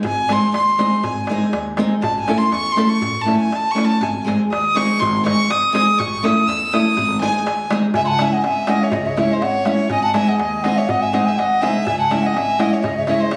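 Balkan folk in the manner of a wedding band, this restless, bittersweet excerpt moves at 122 BPM in a straight 2/4, set in G# phrygian dominant with the harmony rocking between G# and A before turning toward C#m. A rich, pure violin, bowed sul tasto by a single player with a soft attack, sits up front and takes a floating solo for the first 8 seconds. Beneath it, a fingerpicked nylon-string guitar with fresh strings gives small, warm accompaniment, while a woody pizzicato upright bass and a crisp, deep metal-shell darbuka, close and dry, hold the low end and the pulse at a lower level. At 7.9 seconds a breathy, bright bamboo bansuri enters with a reedy straight tone to carry the melody as the music shifts into its second section. The sound is wet with a scoring-stage reverb, yet it was captured on a phone in the room.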